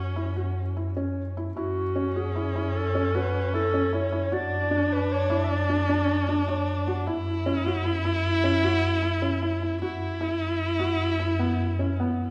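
Contemporary chamber music in a pensive yet urgent 7/4 at 152 BPM in F# minor, cut from a longer piece, where a dark, veiled, bowed double bass holds F#2 beneath a close, rich viola singing a second line with vibrato and portamento, a felt-muted upright piano ripples soft, intimate arpeggios with audible action noise, and a mellow clarinet carries the melody from 1.6 to 6.3 seconds, all set in the wet reverb of a recital hall over chords moving from F#5 through D/F# and C#madd11/F# to E5/F#.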